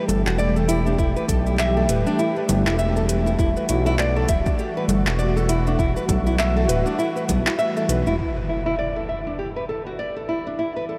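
Earthy and hypnotic, this organic downtempo fragment in E minor sways at 100 BPM with a swung feel, as up-front fingerpicked nylon-string guitar arpeggios, softened by a low-pass filter and tape echo, drift over a detuned, chorused analog pad that pumps to the sidechain. A smooth, wave-folded sawtooth bass glides with portamento and vibrato beneath a tape-warm deep house kit of congas, handclaps, shaker and metallic hi-hats, all muffled by low-pass filtering, while a deep electronic kick anchors the groove from 1.0 to 7.4 s. At 8.2 s the bass drops away and an electronic impact sounds, leaving the dreamy, reverb-soaked space to linger.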